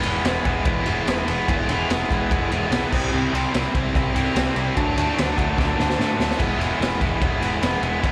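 A bright, overdriven stack guitar leads this raw, rowdy garage rock excerpt, its double-tracked picked riff sitting up front over a straight 4/4 pulse and moving through E, C and D before returning to E. Beneath it, a growling picked electric bass adds overdriven, tube-saturated weight, while an acoustic kit with a punchy kick, dark cymbals and a rolled-off top pumps in a small room, breaking into a fill at 5.6 seconds. The band sounds like a live gig heard through a venue's PA, soaked in club reverb.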